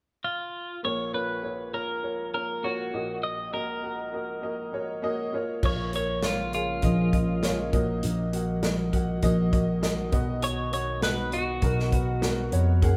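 A bright, compressed twelve-string electric guitar picks out the melody from 0.2 s, joined at 0.8 s by a woody, slightly detuned vintage upright piano in this driving, bittersweet piano-driven pop piece at 100 BPM in Bb phrygian, with a lightly swung feel, before a punchy natural country drum kit and a warm, phased tine electric piano playing the bass line arrive together at 5.6 s, while a very quiet, detuned sawtooth pad with a slow attack and chorus adds sustained chords beneath the band as it plays live in a large studio room with moderate reverb.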